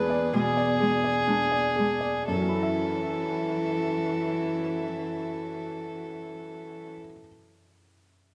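A pure, floating sul tasto violin melody opens this longing, fragile neoclassical piece in F# minor at a rubato 60 BPM, over a soft, felt-muted upright piano with audible action noise and a dark chamber string section sustaining chords in the background; a close cello second line with an airy bow joins at 0.3 s as the music slows through its opening E7 before reaching F#m7 at 2.3 s, set in a moderate large-studio reverb, and the piano carries on alone from 6.9 s until 8.3 s.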